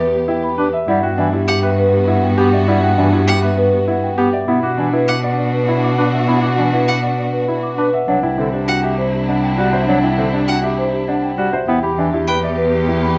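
Minimalist classical pattern music in 3/4 at 100 BPM, urgent yet hypnotic, cut from a longer piece and moving from E minor through Gmaj7, Bm and Cadd9 before returning to E minor. A mellow, round marimba played with soft mallets carries the melody over a clear, present baby grand piano's arpeggios, smooth sustained chords from a chamber string section, and an expressive, up-front cello bass line with vibrato and portamento. A soft-attack bass clarinet joins in accompaniment at 0.6 seconds and a focused single violin adds bowed arpeggios from 1.5 seconds, all set in light reverb.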